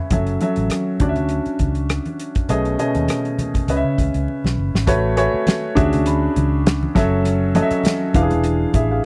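A dry, close 1970s-style studio sound frames this lush soul excerpt in F# minor, smooth and silky at 101 BPM with a light sixteenth-note swing, as a polished, up-front grand piano lays down rich chords like F#m7, Dmaj9 and B13 over a dark, round, foam-muted fingered electric bass. A small-room soul drum kit with a fat snare, tight kick, rim clicks and hi-hat sits up front with a rolled-off top, joined by very quiet, ringing low-tuned congas, and a drum fill at 4.3 seconds leads into the second section. From 5.2 seconds a delicate, bell-like celesta, slightly out of tune and boxy, sparkles faintly in the background over chords moving from A69 to a closing E7b9.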